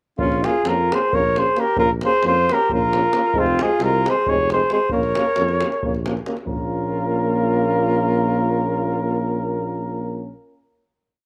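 From 0.2 seconds a full Balkan brass band launches a bittersweet, restless tune in Bb minor at 269 BPM in eighths in 7/8, with a distant flugelhorn carrying the up-front motif-based melody in period phrases with vibrato and slapback echo, a close-miked alto saxophone shading it mostly in thirds, a clear euphonium and a warm background French horn pulsing out the chords, a mellow tuba holding root and fifth on the main beats, and a tight davul driving a two-stick pattern until 6.7 seconds, as the band settles on a long final chord from 6.5 seconds.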